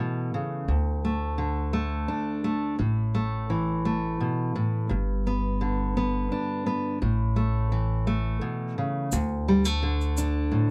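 A fingerpicked steel-string acoustic guitar, up front and warm, opens this nostalgic acoustic folk excerpt in an unhurried 85 BPM waltz time; a woody pizzicato upright bass joins at 0.7 seconds over D5, A5 and G chords, and a grainy, bright tube shaker slips in at 9.1 seconds as a new section begins, all within a dry, dark production.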